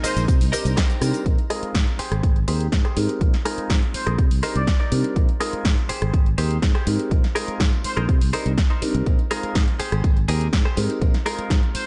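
A punchy, layered electronic kick drum sits up front in this funky, sunny stretch of filtered disco house, arriving at 0.3 s and driving a straight 4/4 at 123 BPM in Bb mixolydian. Around it, a growly fingered electric bass, a twangy, scooped clean electric guitar riff with subtle chorus, and a dark, mellow baby grand piano with phaser all pump with sidechain and sit behind a low-pass filter, cycling through Cm7, Bb7sus4 and Abmaj7. An analog drum machine adds cabasa, hi-hat, rim click and a snare re-recorded in a large room, while a very quiet, close tambourine part with maracas and group handclaps appears at the start and again near the end. The opening drop carries a guitar fill and a lush, vintage string machine with sawtooth sub-octave tone, ensemble chorus and 12-bit sampler grit, which stops at 1.2 s before a long filter sweep takes over. A bright trumpet section with light vibrato and diffuse ambient delay states its melody mainly from 3.9 s, all in a dry mix with a top end that stops at 10.5 kHz.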